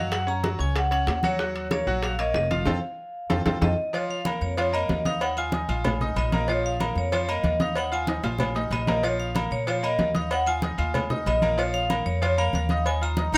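A fast, straight 4/4 salsa groove at 188 BPM drives this fiery, danceable passage in Bb minor, cut from a longer piece. Low-tuned, damped congas with a thick-skinned sound sit beneath tight, high-tuned bongos and cowbell and metal-shelled timbales with agogo bells, the last two carrying a vintage, band-limited character. A woody, thumpy pizzicato upright bass on gut strings stands up front, while a brilliant grand piano comps close and intimate, its action noise audible and its notes sustaining long. Over them a vibraphone played with medium hard mallets carries the melody, metallic and ringing with slow motor vibrato and a plate reverb. The harmony moves through Gb, Ebm7 and F before a band accent and drum fill land on Bb at 3.9 seconds, another fill follows at 8.1 seconds, and a raspy, gritty baritone saxophone breaks in at 13.3 seconds just as the passage is cut off.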